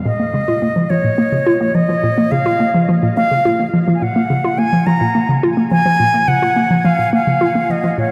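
Drenched in a huge, echoing reverb that suggests a vast space, this cosmic, expansive ambient fragment at 106 BPM in Bb minor pairs a hollow, bouncy, warbling vintage square-wave pluck riff, thickened with chorus and delay, with an airy, reedy concert flute melody sung with vibrato and a soft attack through its own delay, both parts sitting up front over a single Bb minor chord from 0.1 seconds to the cut at about 8 seconds.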